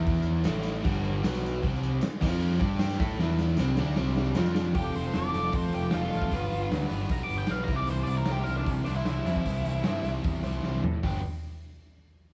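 Swaggering and raw, this short garage rock cut pairs a biting, double-tracked overdriven guitar riff with a growling, overdriven picked bass and a punchy, gritty drum kit with fills at 3.2 and 10.6 seconds, while a jingly tambourine sits in the background until 4.6 seconds and a dark octave-fuzz lead guitar takes a solo from 4.8 seconds, all wrapped in small-room ambience, light reverb, cassette tape texture and a faint mains hum.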